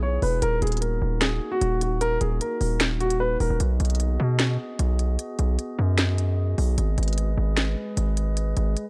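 A dark grand piano opens this half-time trap excerpt in B major, its mellow, intimate tone carrying the melody with audible action noise and a vintage smoothness, while a glass harmonica holds ethereal, slow-blooming chords and a distorted 808-style bass rumbles underneath. At 0.2 seconds the electronic trap drum kit arrives up front, pairing a sharp snare with crisp hi-hats and finger snaps at 151 BPM. The bass is heavy and aggressive, a sine tone layered with noise, with a fast attack and a decaying tail that sits prominently in the mix. The piano drops out at 3.6 seconds as the harmony moves from D#m to B6 and later to G#m, leaving the glassy, pure harmonica chords, the bass and the drums to carry the second section. Studio reverb gives the dark production a warm space, and the mood feels both triumphant and dreamy.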